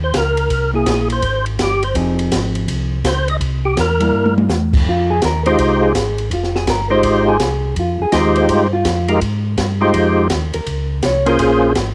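A percussive tonewheel organ carries the melody up front, its fat, lightly overdriven tone colored by third-harmonic percussion, key click, chorus vibrato and a slow rotary speaker, and it takes the solo through the opening stretch of this soulful, smoky soul jazz organ trio cut from a longer piece. Beneath it, a second tonewheel organ plays the bass with a mellow, round, dark and clean sound, also up front, showing its own key click and slow rotary speaker. An acoustic jazz kit sits in a studio room with dark cymbals, a high-tuned snare and a boomy kick, all carrying a cassette-tape grain, and it plays a fill around 4.1 seconds. At 4.9 seconds a clean, fingered hollow-body electric guitar, dark-toned and also tape-colored, steps forward from its accompanying role to take the solo over a repeated swung section in 4/4. The whole trio sits in a small room ambience with the intimate feel of a home recording on cassette.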